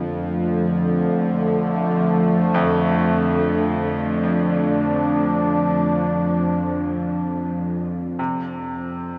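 Dark ambient drone in free time, ominous and vast, cut from a longer piece and soaked in a huge, dreamy reverb. A tense, string-like bowed drone with ring-modulated grit and vibrato sits up front alongside a warbling, detuned vintage pad whose resonant sustained chords, thickened by chorus, hold on D until the pad stops at 8.2 seconds, where the harmony shifts to F. Beneath them a brilliant grand piano plays low arpeggios through an analog delay, quieter in the mix and continuing with the drone until 9.2 seconds.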